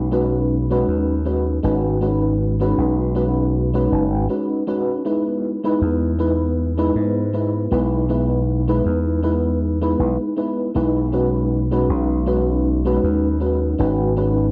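The groove sits at a slow 79 BPM in 4/4, with a gentle 55% swing on the sixteenths giving this vaporwave excerpt a lazy, woozy lilt in E major. A mellow FM electric piano carries the accompaniment from start to finish, its soft, round tone dark and slightly noisy, shimmering through an ensemble chorus and trailing a tape echo. Beneath it, a slap bass runs the full 14.5 seconds, bright and punchy, its amped, direct sound pushed up front and shaped by an envelope filter. The harmony drifts from B69 to Emaj7 at 5.1 seconds and back to B69 at 11.1 seconds, keeping the mood hazy and faded. A moderate concert hall reverb and the softened grain of cassette tape wrap both parts in a nostalgic, washed-out space.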